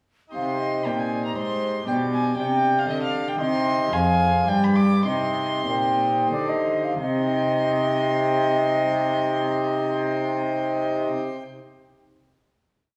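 A baroque-style sonata movement in triple time opens at 0.3 seconds with violin, flute, organ and cello all sounding together, setting a solemn, flowing mood with a rubato feel. The solo violin carries the melody with a dark, nasal gut-string tone in period style, heard from a distance, while the wooden baroque flute weaves an airy, crisp second line of independent inner voices and sustained chords. The pipe organ's principal chorus fills out the accompaniment with full baroque voicing, audible chiff and rolled chords, and the reedy cello sits up front with a walking bass that also settles into sustained low notes. The pace begins to slow from 2.6 seconds, easing the harmony home to C minor before a final chord arrives at 7.0 seconds and rings out. A wet recital hall reverb wraps the ensemble, giving the sound a resonant glow.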